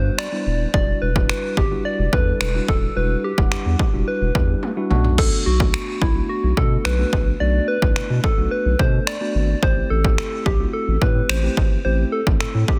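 A punchy analog drum machine drives a straight 4/4 pulse at 108 BPM, entering at 0.2 seconds with a punchy kick, finger snaps, toms and crash cymbal, its snare softly clipped and the kit placed up front with the air of a large room around it. This summery, euphoric dance-pop piece is cut from a longer track, and a drum fill lands at 4.6 seconds as the harmony moves from Gmaj7 and Em9 to Bm7, later settling on Am7. Underneath, a deep, saturated sine sub bass holds thick, sustained notes with a fast attack, pumping through sidechain compression. A mellow tine electric piano, clean and heard as if through its own built-in speakers, fills in the chords with the same pumping motion. On top, a round, gentle FM lead with a keys-like struck attack and decaying tone carries the melody, colored by chorus, vibrato and tape echo. Light reverb and a dense, heavily limited modern master give the whole mix a compact sheen.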